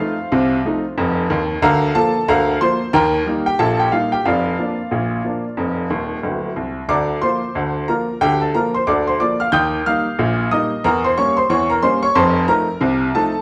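Swung sixteenths at 91 BPM in 2/4 drive this jaunty, cheerful ragtime piece in Bb major, where a lone upright piano, clear, woody and slightly detuned, sits up front across a span from D1 to G6, cycling through F7, Eb and Edim7 harmonies with a brief fill at 5.9 seconds, all bathed in the wet reverb of a large studio in this short cut from a longer piece.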